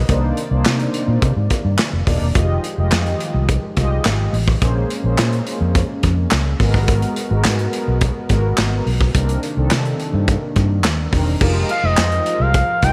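A straight groove from a punchy, up-front studio kit of kick, medium-tuned snare, hi-hat, handclaps and crash, with a pumping room sound, drives this slick, danceable early-eighties boogie funk excerpt, where a dark, round, foam-muted fingered electric bass sits under mellow detuned sawtooth synth brass with vibrato and a filter sweep, a bold, evolving, wave-folded analog pad swelling in the background, and a smooth, expressive portamento lead that glides in up front at 11.7 seconds, all in light small-room reverb.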